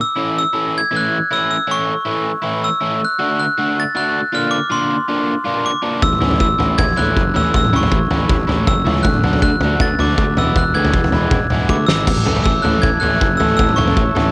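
A lo-fi home recording with light reverb, this wistful yet upbeat indie rock fragment opens on a dark, bell-like glockenspiel melody struck with brass mallets, set up front over a bright, double-tracked riff from a crunchy overdriven guitar, both carrying a cassette-tape grit. At 6.0 seconds a round, fuzz-laden fingered bass and a roomy, loose drum kit with a fat snare, punchy kick, dark cymbals and toms join in, the kit also tape-colored. A drum fill at 11.7 seconds leads into a very quiet, silky, airy analog string pad that enters at 12.0 seconds as the passage repeats.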